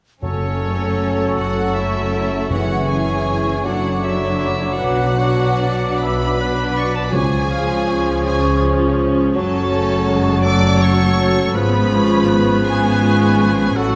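Bathed in a wet concert hall reverb, this excerpt from a slow, romantic orchestral movement in F# minor unfolds at 54 beats per minute in a rubato 6/8, with an elegiac, melancholic air. A chamber violin section carries the melody with a rich, smooth vibrato, while a flute section with airy, crisp tone, a solo oboe that sounds distant and roomy, a softly attacked close-miked clarinet, and a lush symphonic violin section weave second lines alongside it. A mellow bassoon and a French horn section holding sustained chords fill the middle, joined at 0.6 seconds by a focused viola section in the background. The low end rests on a dark, woody cello section and a double bass section, the loudest of the orchestral parts. Very quiet timpani played with medium mallets sound close and dry, heard from the opening until 3.6 seconds and again at 7.1 seconds. The harmony moves from F#m through C#m/F#, D/F#, Bm and C# before returning to F#m and closing on C#7/G#.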